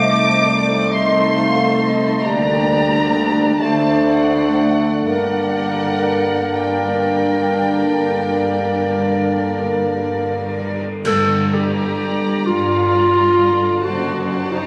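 A yearning, solemn slow romantic movement for symphony orchestra in G minor, cut from a longer piece, moves in a rubato 12/8 at about 39-45 BPM, with a rich, vibrato-laden violin section carrying the melody over a sul tasto second violin line, an airy flute group, a mellow clarinet, viola, cello and double bass sections, a mellow vintage-toned bassoon, a dark, distant French horn section holding chords and a ringing fingerpicked concert harp playing arpeggios. Dark cymbals, a cymbal swell and concert bass drum sit close and dry in the background from 5.1 to 12.9 seconds, with an ensemble accent at 11.1 seconds, while the flutes drop out at 10.3 seconds and the bassoon and horns at 10.7 seconds. The sound has a moderate scoring-stage reverb, but it was captured on a phone in the room, adding a club-like ambience and compression.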